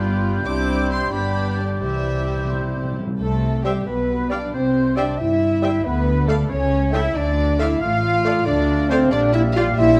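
Cheerful and spirited, this quick classical-period orchestral movement in 6/8 at 91 BPM in C major sets a soft-edged chamber violin melody over warm violins, a clarinet, a mellow oboe and a pure, distant flute group, with a background viola section and bassoon filling in the accompaniment, cello and double bass sections anchoring the bass, a prominent French horn section holding sustained chords, and hard-mallet timpani adding a dry fill between 1.8 and 3.1 seconds, all set in a moderate scoring-stage reverb.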